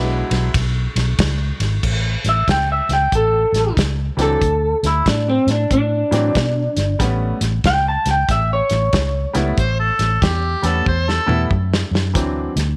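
This laid-back, gritty electric blues shuffle opens with a twangy electric guitar carrying the melody through a small old amp. Its bright, slightly broken-up tone is doubled by a slapback echo, over a woody, brilliant upright piano and a round, foam-muted fingered bass. A soul drum kit with dark cymbals, a tight kick and a rolled-off top joins almost at once, setting a relaxed 93 BPM groove in 4/4 with swung eighths in A mixolydian. The harmony moves from E9 to A, D5 and A9 before landing on D9. The guitar drops out at 10.4 s, just after a mellow harmonica slips in at 9.6 s with scooped notes and light vibrato. A drum fill at 10.9 s carries the groove toward the close, all set in a small, lightly reverberant room, and the passage is cut from a longer piece.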